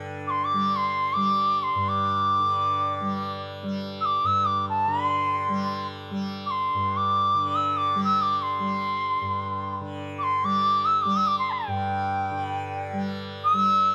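Serene and devotional, this Hindustani classical fragment unfolds in free time, tuned to A4 = 438 Hz, as a softly plucked, buzzing tanpura drone shimmers beneath an airy, reedy bamboo bansuri that enters at 0.3 seconds and sings up front with vibrato and tongued notes in its high register, all captured by close, detailed microphones with light reverb.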